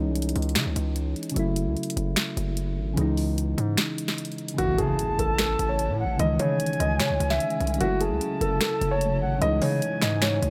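A distorted 808-style bass, heavy and saturated, drives this dark, hard-hitting half-time trap cut in C# minor at 149 BPM, under soft, round electric-piano-like synth keys with chorus and a sharp electronic kit of finger snaps, snare and bright hats that enters at 0.2 s. After a short break, an impact lands at 4.6 s as a mellow grand piano with audible action noise and tape echo takes the melody, joined by a distant, reedy concert flute with vibrato and echo. At 5.7 s a very quiet, blurred granular pad settles in beneath, all in a dry mix cut from a longer piece.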